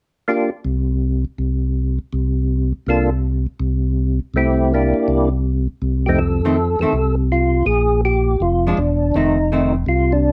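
Soul jazz organ trio in a soulful, bluesy vein, swinging along at 163 BPM in 4/4, cut from a longer piece and tuned slightly flat at A4 = 436 Hz. A tonewheel organ handles the bass from 0.6 seconds, its full, thick, lightly overdriven tone carrying chorus vibrato, key click and a slow rotary speaker. The melody comes from a second organ voice, fat and clean with third-harmonic percussion, key click, chorus vibrato and the same slow rotary effect; after a brief opening figure it returns at 2.9 seconds. The harmony hangs on C7sus4 before settling into F mixolydian and moving through F7, Bb7 and back to F7. A dark, hollow-body archtop guitar, picked and clean, adds accompaniment from 6.5 seconds. All three parts sit up front in a dry, dark, warm production.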